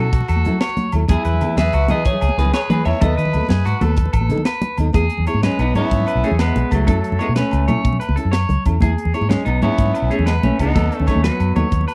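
Warm and sunny, this short excerpt of 12/8 highlife sets a clean, hollow-bodied semi-hollow electric guitar melody with spring reverb over a round, punchy foam-muted bass up front, a tight funk drum kit with a high-tuned snare, soft-handed congas and ringing agogo bells in the background, fingerpicked nylon-string guitar accompaniment, twangy slightly broken-up electric guitar arpeggios with slapback echo, and a raspy, growling trumpet second line with scooped notes, all captured in a dry, close 1970s-style small-room sound.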